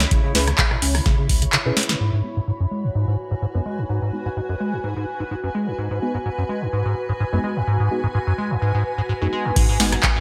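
A squelchy, resonant square-wave acid bass sits up front in this hypnotic, gritty acid house piece cut from a longer track, its smooth, decaying riff colored by phaser, tube saturation and analog chorus, with a filter sweep running through it from 2.0 to 9.6 seconds. A tape-warm analog drum machine booms alongside a deep electronic kick, with crisp snare, metallic hats and handclaps given a short room, plus rim clicks and crash cymbal, all treated with gated reverb. The drums, kick and a thick, saturated triangle sub bass with sidechain pumping drop away early and return briefly near the end, leaving the middle stretch to the synths. A soft, dark chord stab of detuned triangle, sawtooth and sine tones, treated with chorus, phaser and delay, sweeps through the same stretch with a moving notch as the harmony shifts from C#m7 to G#m7. Behind it all, a blurred, evolving granular pad drifts throughout with a slow attack and long release, pumping gently beneath a bright 1980s-style digital production with light reverb and a lilting swing.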